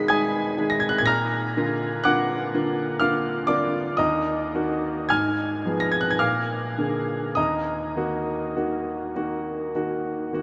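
A lone grand piano opens the recording on an Abm/Cb chord, setting a melancholic, mournful tone for this romantic nocturne in Eb minor. The tempo drifts between 49 and 64 BPM in a slow, rubato 3/4, lending the phrases a freely breathing pulse. The piano's tone is bright and brilliant yet natural, sitting up front and spanning a broad range from Eb2 to Cb7. The harmony moves from Bb to Ebm, then through Fdim/Ab and a Bb7 before coming to rest on Ebm at 7.4 seconds. Surrounding the instrument is a huge, wet ambient reverb with an 8.0-second decay, placing it in a vast, echoing space for the full 10.4 seconds of this brief passage cut from a longer piece.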